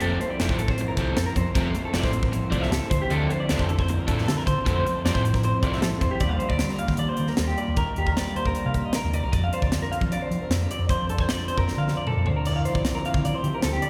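A bright, wistful math rock and midwest emo piece opens with five parts together: a clean, up-front electric guitar playing high fingered arpeggios, a dark, slightly broken-up guitar through a small old amp with spring reverb, a picked, double-tracked overdriven riff, a round hollow-body short-scale bass and an airy, polished fusion kit with bright cymbals, a high-tuned snare and a tight kick. The crunchy riff drops out at 6.1 s as the chords move from Fmaj7 and Dm9 to Ebmaj9 and F6, and a drum fill at 11.7 s leads into a closing Dm11. The whole mix sits in a long, wet church reverb.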